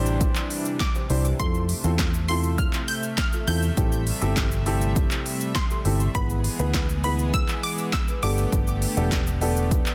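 A straight 4/4 groove at 101 BPM drives this summery, upbeat dance-pop clip, where a punchy, layered deep house kit with smooth hats sits up front beside a dark, round, foam-muted electric bass that pumps with the smooth supersaw pads under sidechain, while a natural baby grand piano comps through Cadd9, Fmaj7, Am7, E/G# and Gadd9, a very quiet grainy egg shaker adds sparkle, and a lush, detuned unison pluck with digital delay carries a high melody from 0.8 to 8.8 seconds over light digital ambience in a dense, heavily limited modern master.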